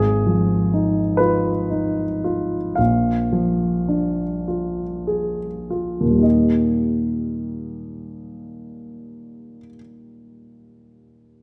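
In a free, rubato 4/4 at a very slow 32 to 44 BPM, this wistful, mournful romantic nocturne for solo grand piano slows down through its first 6.2 seconds, drifting from Fm7b5/Ab to Bb7 before settling on Eb as a new section opens. The piano is warm and up front, with short sustain, spanning Ab1 to F5 and tuned to A4 = 442 Hz. A moderate recital hall reverb adds a 1.7 second tail to this brief passage cut from a longer piece.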